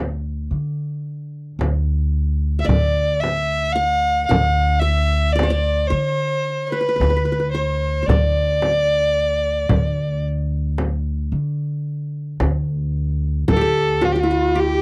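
Warm and passionate, this short excerpt of an Arabic maqam ensemble in D maqam rast moves in 10/8 at 111 BPM, opening on a woody, dark pizzicato upright bass before a small, bright frame drum joins at 1.6 seconds and, from 2.6 seconds, an up-front violin sings a smooth, bowed melody with vibrato over a plectrum-plucked, bright-edged qanun second line, all captured in a dry, close 1970s-style studio sound.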